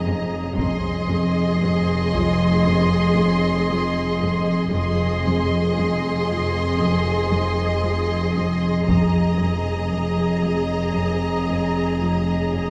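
Over a slow, straight pulse in four, this tense, uneasy suspense cue from a film score holds a single dark chord for its full 12.7 seconds, heard from further back in a reverberant scoring stage. Lush, distant violin sections carry a high melody and a second line above an expressive viola section, while one cello section and a double bass section anchor the bass in the background and a second, very quiet cello section plays a low riff. An eerie, metallic drone with a slow attack and chorus hovers underneath, and a taiko ensemble struck with heavy sticks rumbles in the background from 0.6 to 2.6 seconds and again from 8.9 to 10.9 seconds.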